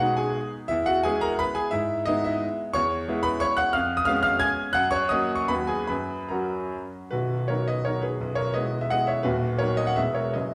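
A clear, intimate baby grand piano with audible action noise plays alone through this short cut from a longer classical piece, a proud and graceful romantic dance in 3/4 with dotted rhythms, set in B major at a free, rubato pace of 139-192 BPM. The opening passage moves from G#m/B through E, C#m7/E and C#7/E# to F#, and at 7.1 seconds a new section settles on B and E chords. The piano sounds natural and close, framed by a large, wet studio reverb that places the listener further back in the room.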